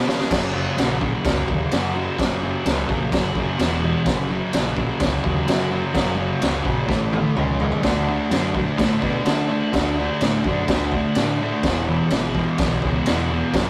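This rough rehearsal-room recording has tube saturation and light reverb, giving a short cut from a longer garage rock piece a rowdy, swaggering energy at 127 BPM in a straight 4/4. A dark, double-tracked fuzz guitar riff sits up front from the very start. A raw garage drum kit comes in with a brief fill a moment later, and the growling picked electric bass joins at 0.3 seconds. The drums sound gritty and boomy in the kick, with a medium-tuned snare, crashes and toms, and a rolled-off top that keeps them mid-forward in a small room. The overdriven bass, heard both direct and amped, adds a warm low end. The chords move from F# to E5 and back to F#, then through A5, C#5 and D before landing on E, and a second drum fill at 6.9 seconds pushes the riff onward.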